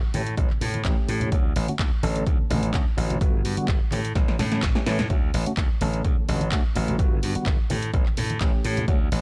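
A barky, reedy electric piano with light overdrive, fast tremolo, phaser and a low-pass filter plays through A7, Dmaj7, Gmaj7 and A chords in D major, joined by a glassy, up-front slap bass with tube saturation, a layered house kit of punchy snare, handclaps and tape-warm hats, and very quiet ringing tube shaker and congas, before an analog electronic kick enters at 0.4 s to drive this feel-good, funky filtered disco house at 127 BPM, where pumping sidechain moves the keys, bass and hats, a drum fill lands from 4.2 to 5.1 s, and the dry, gritty hardware sound places the kick and kit in a small room.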